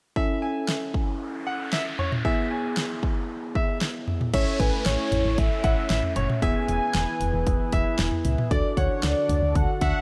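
Synth-pop at 115 BPM in a straight 4/4, this bright, nostalgic passage is cut from a longer piece. From the start a punchy, layered electronic drum kit sits up front with a fat snare, bright hats, crashes and toms, while a worn, slightly out-of-tune tine electric piano plays chords through a combo amp with analog chorus, and a clear grand piano adds a high second line through analog delay. A noise sweep runs through the opening stretch as the harmony moves from A to E, and it leads into the second half at 4.3 seconds, where the chords return to A. There a fat, nasal, detuned sawtooth lead takes the melody with a sub octave, vibrato and chorus. It plays over a round, dark FM bass with a fast, decaying attack and an evolving, wave-folded pad with a slow attack and a resonant filter swell, coloured by chorus and phaser. The chords pass from A to E and arrive on D near the end, all set in a light reverb.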